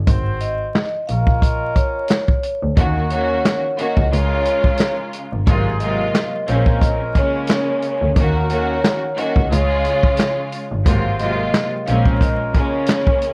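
Worn, warbling tape with vinyl crackle, pitch drift and light reverb wraps this tough, gritty boom-bap hip-hop cut at 89 BPM with swung sixteenths, where a punchy, rolled-off vintage kit of kick, snare, hi-hat and handclaps sits up front beside a nasal, earthy bowed double bass, distant roomy jazz-style horn stabs and a metallic, ringing vibraphone melody with slow motor vibrato float over chords moving through Ebm7, Db, Ab13 and Bbm9, and a lush, smooth bowed string section joins at 2.8 s.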